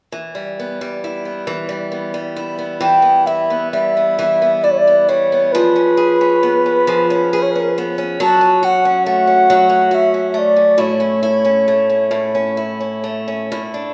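Loose and rubato in an unhurried 3/4 at about 67 BPM, this Celtic slow air in E dorian carries a longing, mournful mood, and it is cut from a longer piece. A picked acoustic archtop guitar opens alone at 0.1 seconds, its boxy, up-front tone laying down the accompaniment. At 2.8 seconds a baroque flute enters with the melody, its wooden, pure voice shaded by vibrato and a soft attack, and it sits above the guitar until 13.1 seconds. The harmony moves from Em through C#7/E# and F#m to A. The recording has the wet reverb of a church or concert hall, giving the duo a resonant space.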